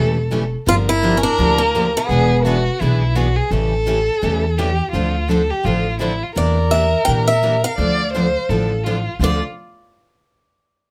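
In a moderate studio ambience, this swinging, virtuosic cut from a longer jazz manouche piece in D minor moves at 169 BPM, with a woody, thumpy upright bass up front, a full-bodied dreadnought guitar and a boxy parlour guitar in the background picking the accompaniment, a close, bowed violin carrying a second line with vibrato and portamento, and a bright swing-style lead guitar taking the melody from 0.7 to 2.6 seconds and again from 6.4 seconds.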